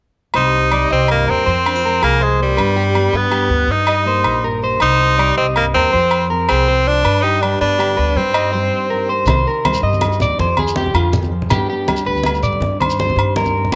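A moderate spring reverb and a dark top end, with nothing above 7.7 kHz, give this short cut from a longer highlife guitar-band piece a warm glow. It moves at a danceable 108 BPM in a straight 12/8, in C minor with tuning at A4 = 437 Hz, cycling through Cmadd9, Fm, G and Eb6/G. A full-bodied fingerpicked dreadnought acoustic guitar sits beneath a picked electric guitar that plays slightly broken-up arpeggios with slapback echo, while a woody pizzicato upright bass and ringing, close agogo bells carry the groove. Up front, a forceful, edgy tenor saxophone takes the solo melody in a pop style, with vibrato and scooped notes, until 9.1 seconds. At 9.3 seconds, bright, low-tuned congas struck with hard hands in a live room and a grainy shekere enter together to lift the rhythm for the closing bars, keeping the mood warm and danceable.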